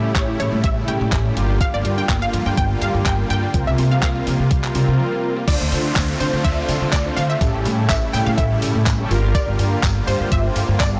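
A punchy, wave-folded unison pluck carries the melody with tape echo over mellow, chorused and phased synth brass, huge, bright supersaw chords and a woody pizzicato upright bass, the chords and bass both pumping with sidechain, while a quieter pluck plays arpeggios until 5.4 s and a crisp, thumpy 8-bit drum machine with kick, hi-hat, handclaps and crash drives this energetic dance-pop passage in 4/4, joined at 5.5 s by a faint, jingly tambourine and a background downlifter, the whole recording blown-out and overdriven under light digital reverb.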